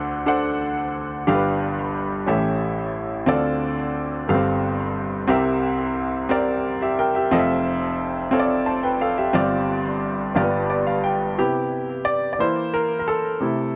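A clear grand piano opens this gospel piece alone, playing in a slow, straight 6/8 at 60 beats per minute in C major, with a hopeful, reverent mood. The piano sits present and up front, spanning from deep bass notes to the upper middle of the keyboard, with a touch of tape echo on its sound. Its harmony moves through rich seventh and suspended chords, passing from D7 and G7 through Dm7, G9sus4 and C7 to Fmaj7, then resting on G7sus4 before resolving into G7. At 10.3 seconds the piano plays a short fill that leads into a brief solo passage from 11.4 seconds, settling on Cmaj7 and C7/E. The recording is dry and close, in the manner of a 1970s studio, and this short section is cut from a longer piece.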